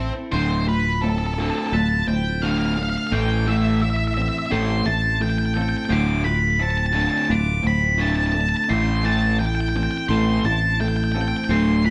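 Melancholic and brooding, this rock passage moves at 86 BPM in a straight 4/4, cut from a longer piece and sitting in D dorian as it alternates between Dm7 and Am7. An octave-fuzz lead guitar carries the melody up front, its distorted, fuzzy tone spanning C4 to D6, while a sustaining fretless electric bass growls beneath it, also up front and played direct and amped. A crunchy overdriven guitar, double-tracked and picked, enters at 0.3 seconds with a riff, as the whole section works as a build-up running to 11.9 seconds. Two clean guitars spin arpeggios throughout: a twelve-string electric with a bright, compressed shimmer, and a twangy electric guitar tucked into the background with digital delay on it. The band sounds like it is playing live together in one large studio room, with a moderate reverb giving the sound a sense of space.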